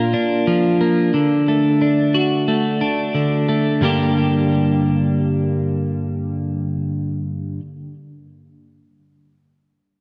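A clean, twangy twelve-string electric guitar sits up front, picking arpeggios through the whole 7.6-second excerpt from the longer rock piece, its compressed tone carried by digital delay and a slapback echo. Set at 89 BPM in 4/4 with a straight feel in G minor, the guitar moves from Bb to D before settling on Gm at 3.8 seconds, where the second section begins. A lush, wet hall reverb lends a big arena sound, giving the melancholic mood a cinematic sweep.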